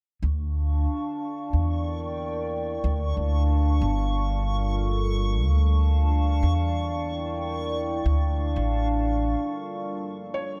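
Brooding and cinematic, this trip hop excerpt rests on a woody pizzicato upright bass up front and a deep, detuned analog pad treated with chorus and phaser, its slow-attack chords moving between Dm, Em7b5 and Gm9. A reversed, granular texture glimmers high above from 0.7 seconds, and after the bass drops out at 9.3 seconds, just ahead of the break at 9.4 seconds, a single muted, felt-softened upright piano note with vintage 12-bit sampler grit arrives at 10.3 seconds. The dreamy mix is soaked in moderate cathedral reverb.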